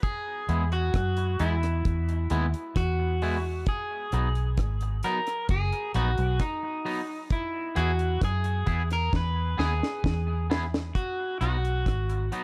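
Set in a small, intimate room, this uplifting, laid-back roots reggae excerpt pairs a dry, dark, deep drum kit with a high-tuned snare and tight kick against a round, punchy, foam-muted electric bass up front, while a slightly broken-up lead electric guitar carries the melody through tape echo over a clean, twangy rhythm guitar, also echoed, before a drum fill from 9.1 to 11.0 seconds leads into a brief closing passage.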